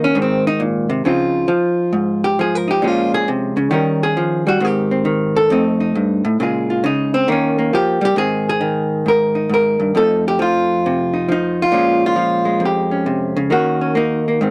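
A dry, close studio sound in a 1970s style, touched with light reverb, frames this short cut from a longer solo jazz piece. A single vintage hollow-body electric guitar sits up front, its clean, picked tone dark and compressed as it ranges from F2 to Bb4. The mood is playful and sophisticated, moving at a swung 135 BPM in 4/4 in Ab major. Over the first 8.2 seconds the guitar takes a solo passage through a turning progression of Dbmaj9, Bbm7, Eb7, Abmaj7 and F7. A new section then opens on Abadd9 and travels through F7 and Bbm7 before the clip ends on an Ebm7 at 14.5 seconds.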